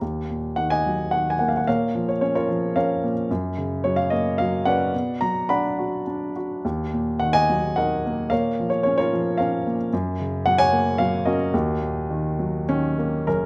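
Classical lyrical solo piano in E-flat minor and 3/4 at 100-113 BPM, played with a free rubato feel on a warm, intimate baby grand that sits up front, close and natural, its action noise audible under light reverb, moving through a sunny progression from E-flat minor through B-flat minor, G-flat and B minor before returning home in this excerpt cut from a longer piece.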